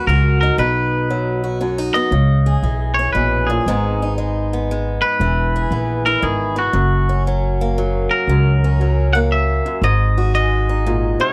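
A dry, close 1970s-style studio sound frames this sunny, heartfelt honky-tonk and classic country excerpt in a swung 3/4 at 117 BPM, where a bright, twangy, compressed electric guitar carries the picked melody up front over a boxy acoustic guitar picking swing-style accompaniment and a woody, thumpy gut-string upright bass, moving through chords such as C#madd9, G#m, E and F# before landing on G#7(no3) at 9.8 seconds.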